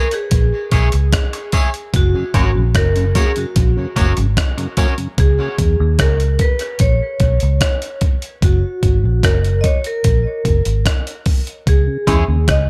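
Steeped in digital ambience, this hypnotic, spacious dub reggae excerpt floats a bright, ringing vibraphone melody with dub echo over a gritty, compressed sampler-style breakbeat kit and a dark, foam-muted electric bass up front, while a twangy, slightly broken-up electric guitar, a mellow tonewheel organ on slow rotary speaker and a distant tambourine and woodblock fall away around 5.2 seconds before returning briefly from 11.9 seconds.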